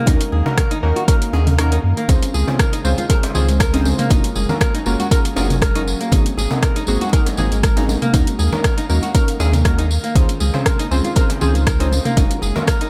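Afro house at 119 BPM in Eb dorian, with a driving, earthy groove and a light 16th-note swing, cut from a longer piece. An overdriven electronic kick sits up front alongside a round, sine-like sub bass with tube saturation, while an afro-pop kit adds metallic hi-hats, rim clicks and toms, and a distant djembe with metal rattles murmurs very quietly beneath. The kick drops out briefly from 1.6 to 2.1 seconds, and at 2.1 seconds bright congas and a jingly, band-limited tambourine join in the background. Over this, a fingerpicked flamenco guitar plays arpeggios through tape echo, and dark, chorused chord stabs with a filter sweep decay after a fast attack; both pump against the kick, as does the bass. An ethereal, warbling pad holds detuned chords very quietly underneath, and the progression cycles through Ebm7, Dbmaj7, Gbmaj7 and Ab9 in a dry mix.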